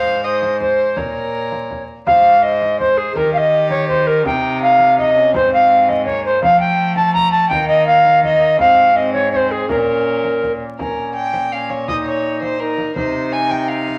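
In triple metre, this courtly yet rustic excerpt of a Renaissance-style consort dance sets a pure, wooden tenor recorder with a soft chiff out front on the melody, a close, reedy gut-string violin on the second line, and a nasal, lightly vibrato period cello on the bass, while a soft-handed frame drum enters at 0.4 s in the background, all within a damp stone-room reverb and a layer of vinyl crackle.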